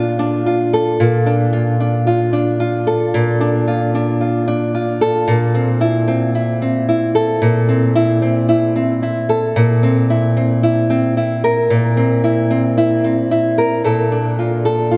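Folktronica with a hopeful, pastoral mood, carried by a solo nylon-string guitar that is fingerpicked and sits small and up front, its fresh strings giving a bright, acoustic sparkle. The guitar moves from Bbmaj7 to C7/Bb at 5.3 seconds and returns to Bbmaj7 as a brief new section begins at 13.9 seconds, with a light swing to its sixteenth notes. Cathedral reverb soaks the dreamy mix in a long, lingering tail, and the clip is cut from a longer piece.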